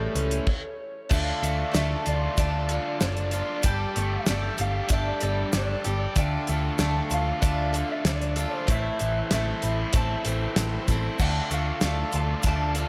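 Lush hall reverb gives a big arena sound to this wistful, dusty folk rock and heartland rock excerpt at 95 BPM, where a compressed, slightly broken-up slide electric guitar carries the melody over a boxy, picked swing-style acoustic guitar, a dark, double-tracked overdriven electric guitar riff, a round, punchy hollow-body bass and a dry 70s drum kit with a fat snare and tight kick, with a brief stop at 0.5 seconds before a reedy, bright tonewheel organ with fast rotary speaker and a grainy egg shaker in the background enter at 1.1 seconds.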